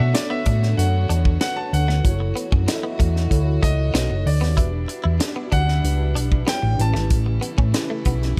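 Bittersweet and nocturnal, this short excerpt of polished 1980s jazz-funk pop moves at 95 BPM in E dorian, with a clear, intimate concert grand piano carrying the melody over mellow tine electric piano with ensemble chorus, a bright, compressed clean electric guitar riff with lush chorus, reedy gut-string chamber strings in the background, a round, punchy hollow-body bass up front, and a tight funk drum kit with a high-tuned snare entering at 0.1 seconds, all in a small room through chords from Bm9 to A7.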